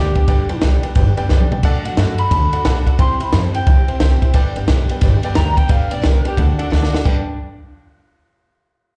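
Rockabilly at 177 BPM in G major with a swung, upbeat and retro feel, heard as a short cut from a live club gig through the venue's PA, with small-room reverb and a dulled top end. A twangy, slightly broken-up electric guitar carries the melody with slapback and tape echo, over a full-bodied picked dreadnought acoustic and a woody upright piano with short sustain, both touched with slapback. Up front sit a punchy compact cocktail kit with a high-tuned snare and dark cymbals, entering at 0.2 seconds and adding fills around 1.3 and 6.7 seconds, and a pizzicato upright bass with steel strings.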